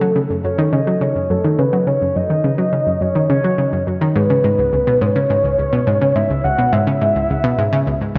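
A dark, detuned synth lead built from triangle and sine tones with a sub octave carries a vibrato-tinged, sustained melody through chorus, phaser and delay over a round, sawtooth-based analog pluck riff that decays under its own chorus and delay in this cosmic, expansive ambient piece at 105 BPM in F# dorian, moving from F#m6 to C#m7 at 4.2 seconds and bathed in a dreamy plate reverb with a 3.5-second tail across this 8.2-second cut from a longer work.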